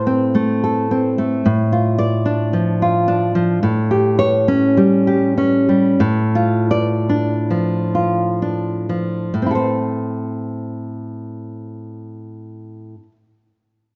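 Intimate and wistful, this romantic piece for solo classical guitar unfolds in A minor in a free, rubato 2/4, drifting between 31 and 56 BPM and slowing from 2.5 to 9.3 seconds before a new section begins. The fingerpicked nylon-string guitar sits up front with a warm acoustic tone, spanning A2 to D5, tuned to A4 = 439 Hz, and moving from Am through Dm/A and A7 back to Am. A moderate recital hall reverb lends the playing a sense of space, and the guitar falls silent at 13.2 seconds in this fragment cut from a longer work.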